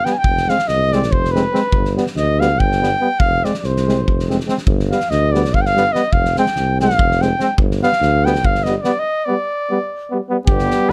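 In an odd, restless 7/8 at 288 eighth-note beats per minute, this Balkan brass band fragment pushes steadily faster throughout its length, carrying a bittersweet mood in G Phrygian dominant. A close-miked, mellow cornet leads the melody up front from the first moment, playing a classical-style solo over chords that alternate between F minor and G. A bright trombone with light vibrato and a soft-attacked euphonium fill in the accompaniment, while a tuba with a smooth top anchors the low end prominently. An acoustic drum kit sits in a roomy studio space, with a fat snare and punchy kick driving the groove beneath a rolled-off top. A break arrives at 9.0 seconds, and the dry, close sound keeps every horn present and intimate until the fragment cuts off at 10.9 seconds.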